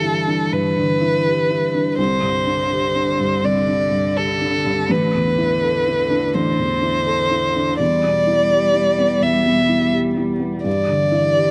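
A rich, vibrato-laden violin carries the melody up front in this tender, intimate neoclassical piece for piano and strings, its smooth bowed line touched by a slapback echo, in G major at 83 BPM with a rubato feel. Beneath it, a felt-muted upright piano supplies mellow, dark accompaniment with audible action noise, while a clear cello plays a quiet second line in the background throughout the 11.5 seconds. The sound is dry, recorded outdoors and cut from a longer piece, moving through chords from G6 and Csus2 to Asus4 and Em before settling on G5.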